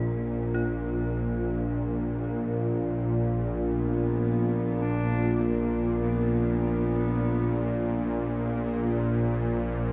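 Dark ambient drone at a slow 53 BPM, ominous and vast, set in a huge, wet reverb and cut from a longer piece. A tense, sawtooth-edged bowed-like drone sits up front from Bb1 to Bb2 with ring modulation, vibrato and a slow attack. Behind it a husky, woody horsehead fiddle carries the melody with portamento and tape echo, and an eerie, inharmonic detuned synth bell plays arpeggios with chorus and tremolo, both fading in from 0.0 seconds, the bell stopping at 7.3 seconds.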